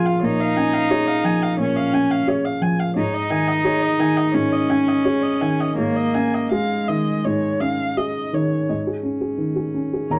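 A felt-muted upright piano, mellow and boxy with short sustain, sits up front in this intimate, hopeful neoclassical excerpt at a rubato 81-88 BPM in 4/4, joined throughout by a pure, floating solo cello bowed sul tasto as the second line and a dark, nasal, woody viola with vibrato in accompaniment, as the harmony moves from Bbm7 to Absus4 at 3.0 seconds within moderate studio reverb and a shadowy, warm production.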